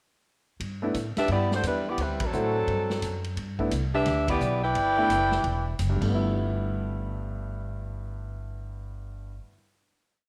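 Joyful and energetic, this short big band swing piece in G major at 173 BPM puts a mellow saxophone section up front, playing a tight, motif-based melody in four-part block voicing with light vibrato. Beneath it run a woody, growly pizzicato walking upright bass, syncopated rootless comping from a baby grand piano, and an acoustic drum kit with dark cymbals, a punchy kick and a ride cymbal pattern that stops at 6.1 seconds. Band accents land at 2.2 and 4.2 seconds, all in a light studio reverb.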